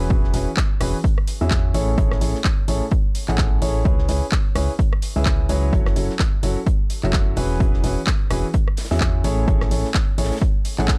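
A 4/4 groove at 128 BPM, swung at 58% on the sixteenths, drives this energetic, soulful piano house cut taken from a longer piece. A punchy, up-front electronic kick carries the pulse from 0.1 seconds, joined at 0.3 seconds by a house kit of handclaps, rim clicks and tape-warmed hats, while a very quiet acoustic kit adds a medium-tuned snare and hi-hat from a small room. Underneath, a round, dark FM bass with a fast attack and decaying notes pumps with sidechain compression. A clear, boxy grand piano plays a short-sustained riff through a low-pass filter and analog delay, also pumping with the sidechain, over chords moving from E6/9 to Amaj7, C#m7 and F#m7 before circling back. The overall sound is dry and gritty, with a cassette-tape character to the recording.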